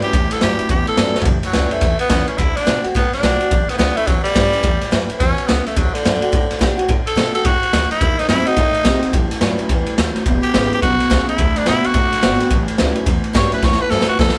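Rockabilly with a rollicking, retro swing, cut from a longer piece and played live in a small room, where a raspy, growling tenor saxophone takes an up-front solo from 1.3 seconds over a boxy picked archtop guitar in the background, a thumpy, woody upright bass and a gritty, saturated garage drum kit with dark cymbals and a punchy kick that adds fills, while a bright, twangy, slightly broken-up electric guitar riff with spring reverb opens the clip and returns at 8.0 seconds as the changes move through A7, D7 and a D#dim7.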